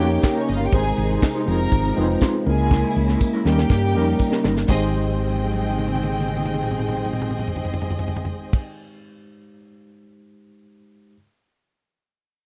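A tight funk drum kit drives this glamorous, danceable disco excerpt at 121 BPM in straight 4/4, its bright cymbals, high-tuned snare, tight kick, handclaps, toms and fills sitting up front beside a dark, round hollow-body fingered bass and a jingly, vintage tambourine in the background. In Ab major, over chords moving from Eb7 through Abmaj7, Fm7 and Dbm6, a lush, woody string section holds sustained chords while a focused violin section with vibrato carries a second line, and a clean tine electric piano and a mellow electric guitar with tremolo fill out the accompaniment. The dry, close 1970s-style sound keeps things intimate; most parts stop near 8.6 s, the drums carry on to 10.1 s, and the electric piano rings on alone until 11.2 s.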